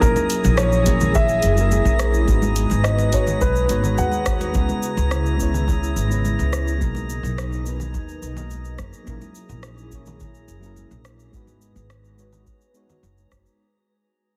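Sunset chillout with a relaxed, smooth mood, this fading fragment opens with a dark, mellow concert grand piano melody through digital delay that stops at 4.5 s, over a round FM electric piano with chorus and tape echo, an ethereal pad under a filter sweep, a drifting glassy harmonics texture, a woody pizzicato upright bass up front, a deep analog electronic kick, a deep house kit of dark hats, rim click and shaker, and bright congas in the background, all heavily compressed into a radio-like sound with light digital ambience.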